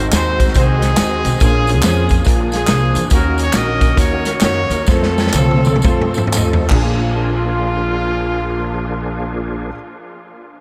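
The horn section leads this solemn, soulful uptempo gospel excerpt in swung 4/4 at 105-141 BPM, carrying the melody in a smooth jazz style with light vibrato and a diffuse ambient delay over clear grand piano with audible action noise, a reedy tonewheel organ on slow rotary speaker, a woody pizzicato upright bass, handclaps with tambourine and egg shaker, and a punchy soul drum kit whose fill from 4.9 seconds leads the slowing groove into a new section at 6.9 seconds, where the drums drop away.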